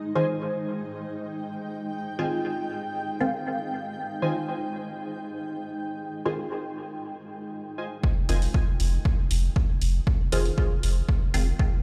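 Dub techno with a meditative, cavernous mood, cut from a longer piece, in which a cloudy, evolving granular pad, warbling lo-fi synth keys with chorus and dub echo, and a muted, nasal chord stab with phaser all pump over an Fm7 chord in a stone room until the punchy, overdriven kick drum arrives at 8.0 s and the pad stops, joined by a smooth, dark sine sub bass and an analog hi-hat.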